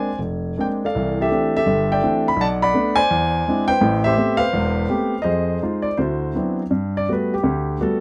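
A warm grand piano carries this brief solo jazz passage on its own, swinging at 167 BPM in 4/4 with a loose, rubato feel in C major. The instrument sits up front and sounds intimate and natural, with long sustain and audible action noise that brings the listener close to the keys. Its range stretches from E1 up to B5, moving through rich extended harmony such as Bb9, C69, E7b13, Am9 and D13 before settling on Gmaj9 at 6.7 seconds, where a short new section begins. A light reverb frames the playing, and the mood stays warm and swinging across the 8 seconds, a short cut taken from a longer piece.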